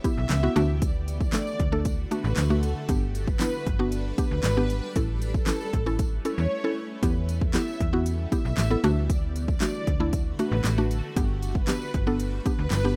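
Punchy, overdriven electronic drums with handclaps, crisp hats and a fat snare drive this euphoric, summery dance-pop fragment, as a snappy, metallic FM slap bass and a woody, round mallet-like pluck pump against the kick over an ethereal, phased pad while a jingly tambourine sits far back in a rough demo mix that moves through Em, D, G and A.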